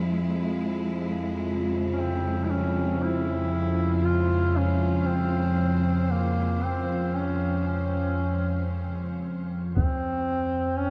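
This dark ambient drone piece moves at a slow 58 BPM in 4/4, ominous and cavernous, with a warbling, detuned analog drone up front through chorus over an Fm to Bbm9/F harmony, while a lush, bowed cello section holds sustained chords in shimmer reverb and fades out by 9.8 s. A solo duduk enters at 1.9 s with a folk-style melody full of vibrato and scooped notes, sounding distant and roomy yet punchy, carried by shimmer reverb and diffuse ambient delay. A compressed, saturated taiko ensemble struck with hard sticks then lands through a low-pass filter, and the piece sits in a vast, echoing space with a reverb tail of 8.0 s.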